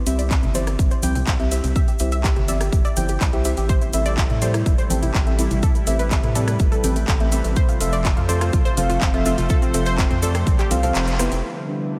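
A detuned, filter-swept analog pluck arpeggio with tape echo opens this driving, bittersweet progressive house excerpt at 124 BPM in A minor, quickly joined by dark, soft chord stabs, a round, wave-folded bass, a punchy up-front electronic kick, a pop drum kit with metallic, tape-warm hats and handclaps, dry background congas and grainy cabasa, while a lush, thick unison pad enters at 3.7 s as the opening C gives way to Am7 and then Fmaj7, the pluck, stabs, bass and pad all pump to the sidechain, and the kick drops out at 11.0 s for a band accent before the move to Em7.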